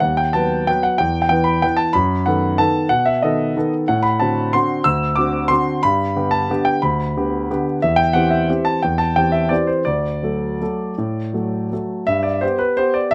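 Set in a lilting 3/4 with a free, rubato feel, this short classical piano waltz moves at a flexible pace somewhere between 156 and 197 BPM. A solo grand piano carries the whole piece, ranging from D2 up to E6 with a polished, present tone and long sustain that rings out up front. The mood is sparkling and elegant, opening on a harmony of B7/D# and E5 before settling into G major from 3.9 seconds. From there the chords pass through G, C/E and D, with a short new section arriving at 12.1 seconds on a return to G. The close, detailed recording in a dry space keeps every note clear and intimate, and the passage is cut from a longer piece.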